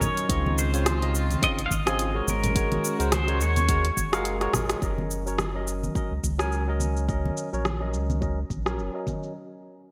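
This sunset chillout excerpt opens on a clean, compressed pedal steel guitar carrying the melody with fingerpicked slide lines and volume swells, over a barky, lightly overdriven tine electric piano and a dark, nasal chamber string section holding bowed, reedy chords in the background. A layered deep house kit with dark hi-hats, cabasa and rim click sits up front beside a deep electronic kick, while bright, soft-handed congas play further back, and a round sine sub bass soon joins up front as the harmony moves from Dbmaj9 to Ab9sus4. The pedal steel drops out at 4.2 seconds, and a drum fill leads into the second half, where the strings have stopped and the music settles on Gb6. From 4.8 seconds, filter sweeps move across the drums and the electric piano, which carries on through a combo amp with delay. The warm, sunny mood rests on a sixteenth-note swing, lush hall reverb and a bright 1980s-style digital sheen.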